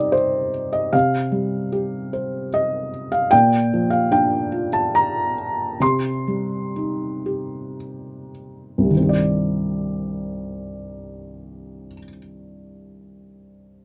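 In a rubato 3/4 that drifts between 50 and 77 BPM and slows from 3.3 to 8.9 seconds, this melancholic, dark classical piece in C minor is carried by a solo felt-muted upright piano spanning C2 to C6, its thick-felt, mellow, intimate tone set up front and caught by close, detailed microphones in a nearly dry space as it moves through Cm, Fsus2/C and Bb before a new passage opens on Cmadd9 at 8.9 seconds.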